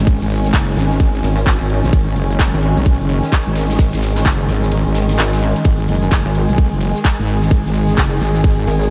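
Aggressive and gritty, this short bass house cut at 129 BPM with a swung 16th-note feel pairs a heavy, detuned sawtooth wobble bass with chorus, overdrive and sidechain pumping against a mellow, pulsing pluck wobble bass entering at 0.5 seconds, both up front, while a tight, layered electronic kick drives the groove and drops out between 4.7 and 5.7 seconds, an overdriven big-room dance kit adds crisp hats, handclaps and shaker, a huge arena kit sits in the background with bright cymbals and a fat snare, and a veiled, distant, con sordino string section holds dark sustained chords through a low-pass filter, all set in light reverb and small room ambience.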